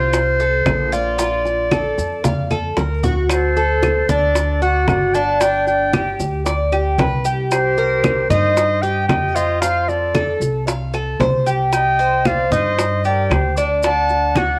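Latin Cuban son and guajira at a relaxed, danceable 114 BPM, this short excerpt sets a clear, up-front clarinet melody with a cassette-tape tint over mellow picked Cuban tres arpeggios on metallic double strings, dark woody pizzicato upright bass, round saturated bongos, bright thin-skinned congas, grainy maracas and woody claves, with a distant, airy jazz flute adding a warm second line with vibrato from 3.3 s after a drum fill, all in a homespun cassette recording with moderate spring reverb.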